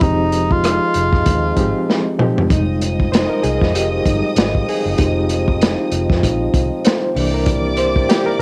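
A barky, lightly overdriven reed electric piano with fast tremolo carries this lush, cinematic 1970s-style soul excerpt, taking a solo at 2.5 seconds after a warm, punchy tenor saxophone phrase with scooped notes ends at 2.2 seconds. Beneath it, a dark, distant French horn section holds sustained chords, a foam-muted fingered electric bass adds round, tube-saturated low end, and a muffled, up-front vintage drum kit with a tight kick swings smoothly and plays a fill just before the solo. From the solo onward, a studio string section adds a soft-attack, sul tasto second line with vibrato, and light reverb and a home cassette recording give the piece its intimate, vintage character.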